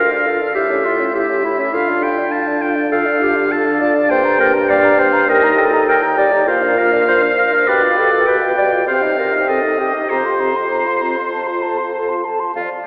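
A bright oboe sits up front with a light vibrato, carrying the second line beneath a hollow, pure-toned silver flute melody in this spirited, graceful classical-period movement for wind quintet, taken quickly at 101 BPM in straight 4/4. A dark, distant clarinet and a soft-edged French horn tucked in the background fill out the accompaniment, while a mellow bassoon holds the bass as the harmony moves from D minor through G minor, E-flat and B-flat before resting on F. The whole excerpt is bathed in a wet church reverb and carries the thin, boxy colour of AM radio.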